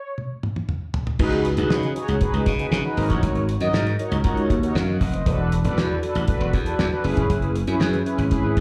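This sounds like a live club gig heard through the venue's PA, with light reverb and a small room ambience around a slick, danceable early-eighties boogie funk groove at 118 BPM in C# minor. It opens with a break: an analog polysynth solo over mellow synth brass, with a drum fill entering at 0.2 seconds. The brass is round, detuned and sawtooth-edged, with a fast attack, sustained notes, a filter sweep and chorus, giving it a dark, brassy body. The damped seventies kit sits up front with a dry, smooth character, a fat snare, a tight kick and a rolled-off top, using crash, hi-hat and toms. At 1.2 seconds the glassy slap bass arrives, bright, growly and punchy, as the groove moves through suspended ninth chords on C#, G#, E and F#.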